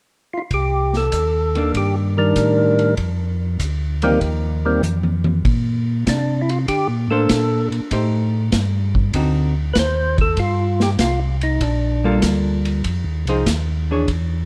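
A fat, lightly overdriven tonewheel organ opens the melody at 0.3 s, its percussive third-harmonic attack and vibrato turning through a slow rotary speaker as the line moves between Eb3 and C5. A moment later a second tonewheel organ takes the bass, round and clean with audible key click, while a vintage acoustic drum kit enters with a punchy kick, medium-tuned snare, dark cymbals and a pumping small-room sound that sits up front. A picked hollow-body electric jazz guitar joins with clean accompaniment at 1.6 s. This is a soulful, bluesy soul jazz organ trio cut from a longer piece, swinging in 4/4 at 97 BPM in Bb major, moving from Cm9 and F9sus4 into Bbmaj9 and on through Am7b5, D7b9, Gm9 and Fm7. A drum fill just before 5.4 s leads into the second section, where the melody organ drops out at 12.2 s and the bass, drums and guitar carry on. The production is dark and warm with light reverb.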